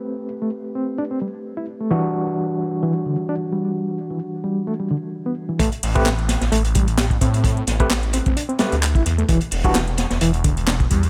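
A reedy electric piano riff with fast tremolo and 12-bit sampler grit opens alongside barky, overdriven tine electric piano stabs trailing dub echo, setting a raw, funky breakbeat groove in A dorian at 130 BPM over Am9 and Em9, until the drop at 5.6 seconds brings in a swirling, thick detuned saw bass with phaser, a dark acoustic breakbeat kit with a tight kick up front and a layered garage kit of metallic hats and handclaps, with the tine stabs stopping at 9.8 seconds in this cut from a longer piece.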